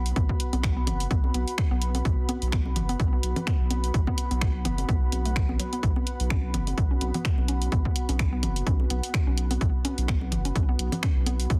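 A dense, heavily limited mix with light reverb frames this sparse, quirky minimal techno excerpt, built on an up-front punchy electronic kick and a tape-warm analog drum machine of finger snaps, hi-hat and a softly clipped snare. Layered congas sit in the background, echoing through digital delay, while a thick, saturated sine sub bass pumps under sidechain compression. A woody, round FM mallet pluck with chorus and delay is tucked behind, and a deep, moody detuned sawtooth pad blooms slowly through chorus and reverb, pumping in time.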